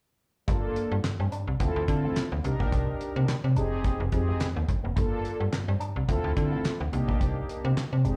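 A snappy, metallic slap-like FM bass drives this slick, danceable early-eighties boogie funk cut at 107 BPM with a light sixteenth-note swing, joined by a damped 70s drum kit with a fat snare, tight kick, hi-hat and handclaps, round detuned synth brass with chorus and slapback echo, and a clean, scooped envelope-filtered electric guitar riff tucked in the background, all heard through a live club PA with reverb as Gm9, Dm9, Cm9 and Fm9 chords cycle from 0.5 to 8.2 seconds.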